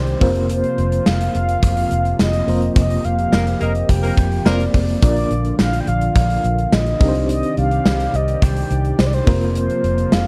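Nostalgic and uplifting, this brief excerpt of 1980s-style pop moves at 106 BPM in a straight 4/4, with a horn-like, round sawtooth synth lead carrying the melody in chorus and vibrato over an FM electric piano with tremolo and a detuned, slow-attack analog pad holding sustained chords. Up front sit a gated 80s drum kit with a punchy kick, medium-tuned snare, hi-hat and tambourine in a bright stone room, and a dark, foam-muted fingered electric bass, while a tight, smooth-topped horn section in octave doubling adds stabs from 3.3 to 4.6 seconds inside a band accent. The harmony moves from Fsus4 through Bb and Cmadd9 back to Fsus4, in a dry, close mix.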